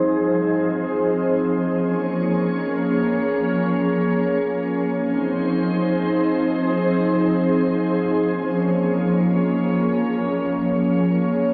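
A glassy, warbling FM pad plays alone and up front for the full 11.5 seconds of this spacious, ethereal hip hop excerpt in free time, its slow-attack, long-release chords drifting between Fm7 and Bbm7 through ensemble chorus, delay and a filter sweep over the first 5.0 seconds, all set in a moderate shimmer reverb within a dark, warm production tuned to A4 = 443 Hz.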